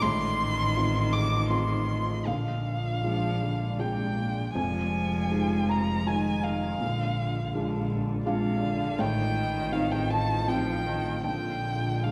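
A felt-muted upright piano grounds this melancholic, reflective neoclassical excerpt, its soft, intimate tone carrying audible action noise as it accompanies from low F2 up to D6. Above it a single bowed violin sings the melody high in its range, its rich tone marked by vibrato, soft attacks and expressive portamento. A lone cello adds a smooth, even second line that sits distant in the mix, while a bowed double bass, close and focused, holds the bass low in the register. Behind them a deep, moody pad of warbling, vintage sawtooth and sine layers with a sub octave swells in slowly and sustains long chords, coloured by chorus and its own reverb. The music moves at 80 BPM in a rubato 3/4 in F dorian, circling through chords such as F7/A, Bb7 and Fm7, and the whole ensemble rings in a recital hall with a reverb time of 1.5 seconds, playing together from start to finish across 12.1 seconds cut from a longer piece.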